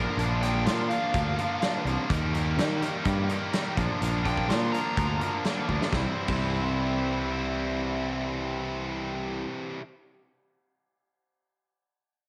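A straight, steady four-beat pulse drives this swaggering classic rock passage, cut from a longer piece. A big acoustic drum kit with a punchy kick, medium-tuned snare, hi-hat and crash cymbal sounds natural and roomy, while a dark, round fuzz bass, fingered and overdriven, sits up front in the mix. Two bright, picked electric guitars carry the riff: one overdriven, the other tight and distorted. Over them, a lead guitar through a small cranked amp plays a warm, overdriven solo with slapback echo until 5.7 seconds, where the drums add a fill before the harmony moves to C at 5.9 seconds. The kit drops out at 6.4 seconds, leaving the bass and the two riffing guitars to push on with driving energy in a light reverb and small-room ambience.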